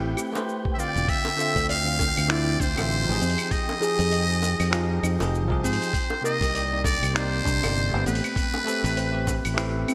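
Sunset chillout at 99 BPM in D minor with a relaxed, smooth 16th-note swing, this cut from a longer piece sets a raspy, buzzy metal-muted trumpet melody with light vibrato and scooped notes up front over bell-like tine electric piano, a soft, round detuned pluck arpeggio with analog chorus and delay, a growly, punchy fingered electric bass, and an airy, wind-like tuned noise texture in the background. A dusty, gritty sampler-style kit of cabasa, claves, finger snaps and hi-hat enters at 0.2 seconds, tight high-tuned bongos at 0.4 seconds, and a thumpy, tape-warm electronic kick at 0.7 seconds, all moving through Am9, Dm9, Fm9 and Cm9 chords within a lush hall reverb and bright 1980s-style digital sheen.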